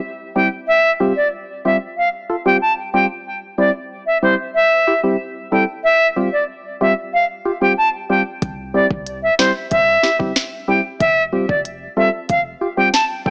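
Dancehall at 93 BPM with a bouncy, sunny mood, this excerpt opens with an airy, reedy flute carrying the melody through tape echo over hollow, percussive organ stabs with chorus and sidechain pumping, until a round sub bass and an electronic afro-pop kit with deep kick, sharp snare and crisp hats join at 8.4 seconds, all heard through worn, warbling cassette tape with pitch drift, light digital reverb and a small-speaker sound as the harmony moves between C and Fsus2.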